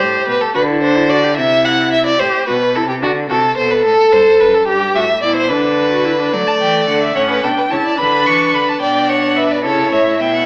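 Heard through an AM-radio tone and the wet reverb of a church or concert hall, this joyful, stately baroque-style fugue for string quartet moves in 12/8 at 72 BPM in G major, as a violin with portamento and a rich viola with soft attacks play their lines over a clear, close cello bass, until a focused second violin enters up front with the melody at 6.5 seconds, all four players bowing with vibrato in an excerpt cut from a longer piece.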